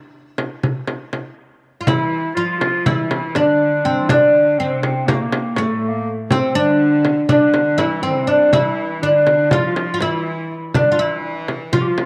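Turkish makam ensemble music in D makam ussak, longing and soulful, moving in a straight 9/8 at 243 BPM counted in eighths: a woody, deep fretless oud carries the melody up front from the start. A small, bright frame drum struck with hard hands joins at 0.4 seconds. At 1.9 seconds a raspy, growling clarinet with light vibrato and scooped notes enters alongside a close, bowed cello section of gut-string, period tone, both taking second lines, all set in a moderate spring reverb in this short cut from a longer piece.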